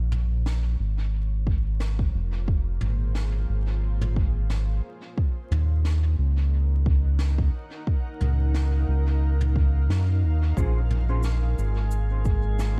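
A round, dark analog bass with tube saturation sits up front in this deep, hazy ambient dub excerpt at 89 BPM in Bb minor, joined from 1.5 seconds by a tape-warm electronic kick and underpinned by a brushed jazz kit of cabasa, snare and toms sent through dub echo. A cloudy granular pad fades in across the whole passage, blurring the Bbm7 and Ebm7 chords beneath a veil of vinyl crackle. Near the close, a clean, fingered electric guitar adds brief stabs at 10.6 seconds with chorus and dub echo, before a glassy texture of drifting overtones emerges at 11.4 seconds.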